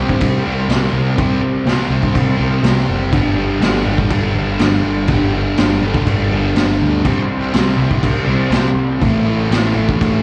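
Heard as if through a venue's PA and onto cassette tape, this short cut from a longer garage rock number carries light small-room ambience and a touch of hall reverb, with a raw, swaggering mood. A bright, double-tracked fuzz guitar sits up front with distortion and slapback echo, picking a riff around C5, G5 and A5 power chords, while a growling picked bass adds overdrive and tube saturation underneath. The up-front acoustic drum kit has a boomy kick, a medium-tuned snare and crashes, all roughened by gritty 12-bit sampler texture and a rolled-off top.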